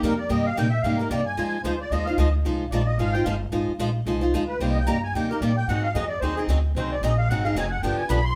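Acoustic string swing in the jazz manouche style, this short fragment of a longer piece feels fiery yet bittersweet, driven by a brisk swung pulse in four. A musette accordion takes the solo from 0.0 to 8.4 seconds, its reedy, shimmering tone sitting up front with a smooth, dark edge. Beneath it, a picked steel-string parlour guitar supplies accompaniment with a bright, boxy bite. A pizzicato upright bass on gut strings anchors the low end with a woody, thumpy sound, also placed close to the listener. The harmony moves from Cm7 to Ab7 at 5.7 seconds and lands on G7 at 7.8 seconds, all captured as a band playing live in one room with a moderate large-studio reverb.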